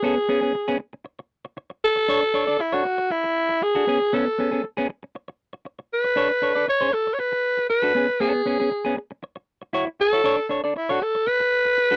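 A clean, fingered semi-hollow electric guitar opens this danceable, glamorous disco excerpt at 118 BPM, laying down warm extended chords that move from Amaj9 through Dmaj7 and Bm9 to D6. A growling alto saxophone enters at 0.1 seconds and takes the melody up front, its raspy, gritty tone and vibrato giving the pop-style solo a punchy vintage edge. Light reverb colours the dry, close 1970s-style studio sound, and the passage is cut from a longer piece.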